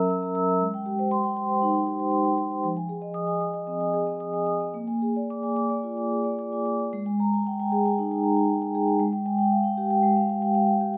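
Contemporary classical music for solo vibraphone, flowing and playful in a loose, rubato 4/4, cut from a longer piece. The vibraphone, struck with soft mallets, sits up front with a mellow, ringing tone, a slow motor vibrato and a vintage, band-limited color, moving through seventh chords before turning to a suspended chord at 6.9 seconds. Close, detailed microphones catch every note, while a moderate stone-room reverb lets the bars bloom around them.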